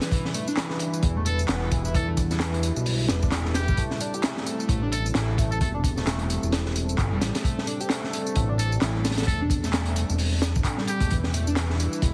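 A crunchy breakbeat kit drives this raw, energetic breaks excerpt at 131 BPM in 4/4, its sixteenths swung, with a punchy kick, high-tuned snare and hi-hat sounding saturated and gritty, the top rolled off and the kit placed up front. An electronic tambourine and handclaps, re-recorded in a large room, ride along with it, while a dark analog pad holds sustained, slow-attack chords with chorus and sidechain pumping, moving between Em7 and Am7. From 1.0 s a fat, detuned analog bass joins up front, thick and wave-folded with a filter sweep. An overdriven synth lead plays a screaming, guitar-like riff colored by distortion, phaser, chorus, vibrato and digital delay. From 1.3 s a trumpet with a metal mute adds a buzzy, thin jazz-style melody in two phrases, with light vibrato, an old record sound and its own delay. The mix carries light small-room reverb and the squeezed character of a heavily compressed radio broadcast, complete with vinyl crackle and lossy artefacts.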